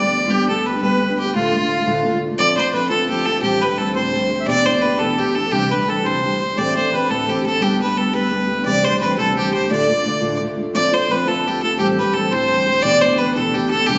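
Celtic folk jig in 6/8 at 115 BPM, spirited and wild, taken from a longer piece and carried by a bright, nasal, earthy fiddle up front on the melody, with a reedy accordion playing a second line. Underneath, a dark fingerpicked steel-string acoustic guitar sits forward in the accompaniment, while a clear, smooth cello holds a low D drone with vibrato in the background. Every part plays throughout the 14 seconds in a wet recital hall, where the chords move from G and Dm through F, Am7, Em7 and Cadd9 before circling back.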